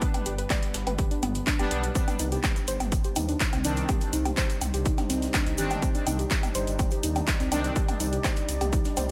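Melodic techno at 124 BPM in C harmonic minor, cinematic and melancholic, cut from a longer piece and moving from G to Cmadd9 in a dreamy mix soaked in lush hall reverb. An overdriven, up-front kick anchors a techno kit of handclaps, metallic hats, toms and woodblock, with a very quiet, gritty breakbeat sampler-style kit adding hi-hat, shaker and snare, and a grainy egg shaker entering in the background at 2.0 seconds. A rumbling, detuned saw bass arrives at 0.3 seconds under a deep, moody pad and soft, round pluck arpeggios trailing diffuse ambient delay, while bold, fat analog synth brass stabs with ring modulation and a filter sweep sound from 1.6 to 7.7 seconds, the bass, pad, pluck and brass all pumping with the sidechain.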